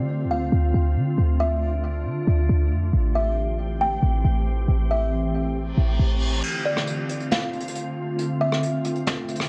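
Worn, warbling cassette tape with a drifting pitch colours this hazy, ethereal slice of atmospheric cloud-rap in a half-time feel, cut from a longer piece. A buzzing, woody kalimba carries the melody through a low-pass filter and digital delay over a glassy FM pad with chorus and reverb, while a deep, boomy 808-style sine bass sits up front over Dm7 and Am7 chords. An electronic reverse cymbal comes in at 5.7 seconds, and at 6.4 seconds the bass stops as a muffled, lo-fi brush drum kit with dark cymbals enters for the break alongside the pad and kalimba.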